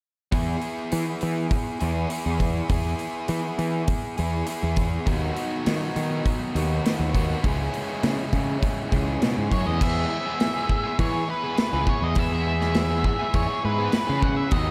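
Indie rock at 101 BPM in E major, wistful and jangly, cut from a longer piece, with a biting overdriven guitar riff, an up-front punchy fuzz bass and a big acoustic drum kit with bright cymbals and a punchy kick driving from the start. At 5.1 seconds a second overdriven guitar slips in behind them, dressed in lush chorus and diffuse ambient delay, as the chords move from E to B/D# and C#m. At 9.5 seconds a dark octave-fuzz lead guitar carries the melody high above, and the whole mix is soaked in a dreamy hall reverb.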